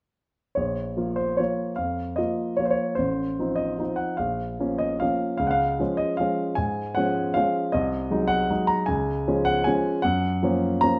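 A present, polished grand piano with short sustain plays alone from 0.6 to 11.0 seconds in this wistful, elegant classical waltz fragment in B-flat minor at 152 BPM in 3/4, its rubato lending the beats an uneven sway as the harmony moves from B-flat minor through D-flat major to a closing G-flat major seventh, all set up front in a reverberant stone room.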